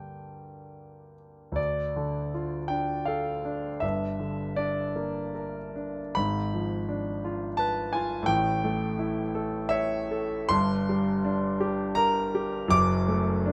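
A triple metre moves with free, rubato phrasing through this short excerpt from a romantic classical nocturne for solo piano, wistful and melancholic in mood. The concert grand sits up front with a warm, natural tone and deep bass, captured by close, detailed microphones in a dry room. After a brief opening, a new section arrives at 1.6 seconds, passing through a diminished seventh and a dominant seventh chord before settling on a final chord at 12.7 seconds.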